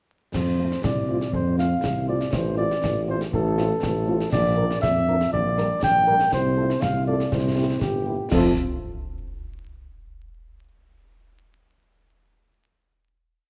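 Heard through a wet recital hall reverb with a layer of vinyl crackle, this spirited, proud military-style march for wind band opens at 0.3 seconds with a dark, close-miked cornet carrying the melody up front in a classical style with light vibrato, over a warm, distant and roomy tuba playing bass on the beats and sustained bass notes. A mellow French horn section sits in the background with after-beat chords and sustained chords, while a close, dry concert snare drum marches over a concert bass drum on the beat, with dark clash cymbals. The short piece moves from F through Bb and C7 before landing on a final F chord at 8.3 seconds.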